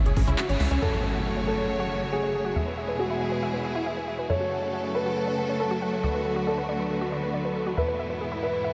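A clear, focused studio string section sits up front, bowing sustained ensemble chords with vibrato and pumping against the sidechain throughout this soaring, euphoric uplifting trance excerpt. At the start, a punchy detuned supersaw stab with phaser, low-pass filter and analog delay plays briefly in the background, alongside crisp hats and handclaps from a layered, tape-warm big-room dance drum kit. The band accent comes at 0.4 seconds, and the stab and drums drop out by 0.8 seconds. At that point an electronic impact hits and a dark, mellow, boxy grand piano enters with a second line, roughened by vintage 12-bit sampler grit and delay. From 0.1 seconds onward, a lush, warbling unison pluck spins arpeggios that take on a filter sweep from 0.8 seconds, while a tight, driving sequencer bass adds a punchy, decaying low end as the chords move from F#m through E and D6. A huge ambient reverb soaks the whole mix in a dreamy wash.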